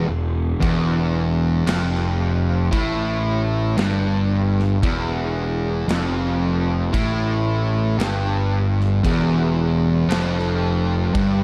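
Stoner and doom metal at a crawling 57 BPM in 4/4, this heavy, sludgy fragment from a longer piece sits on an E minor chord. A double-tracked, up-front fuzz guitar plays a low, distorted, picked riff, while a fingered electric bass beneath it growls with overdrive and tube saturation. At 0.6 s a big acoustic rock kit enters with bright crash cymbals, a medium-tuned snare and a punchy kick, all set in a dark, warm production with light reverb and studio ambience.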